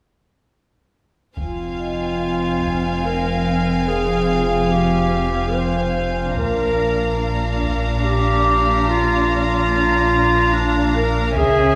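Heard from further back in a wet scoring stage, this uneasy, eerie suspense cue for film moves at 72 BPM in 3/4 in F dorian, shifting from Fm to Bb at 6.4 seconds. From 1.4 seconds a clear, classical-style solo clarinet sits up front with a second line, while a soft-attack chamber violin section carries the high melody over another violin section, sul tasto violas, dark and woody cellos, and warm double basses in the background, all bowed with vibrato. A deep, punchy sine sub bass drones beneath very quiet taiko drums struck with heavy sticks, and a metallic, ringing vibraphone with medium mallets and its motor off adds texture from 1.8 to 11.4 seconds.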